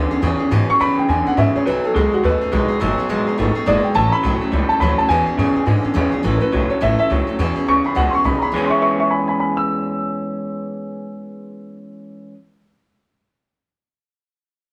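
A live band playing together in one large studio, with a moderate reverb that lends the room some depth, opens this short, rowdy cut from a longer rockabilly piece in E major. It races along at 210 BPM in 4/4 with a light swing on the eighth notes, and the chords move between E6, B6 and A6 for a retro energy. Up front, an electric guitar through a small old amp plays the riff with a twangy, slightly broken-up, lo-fi bite, while a thumpy upright bass with gut strings holds down the low end with woody plucked notes. A bright, full-bodied steel-string acoustic guitar picks the accompaniment beneath them. From 0.7 seconds a dark, mellow upright piano carries the melody with a smooth, vintage tone, riding high above the band until the cut ends around 12.3 seconds.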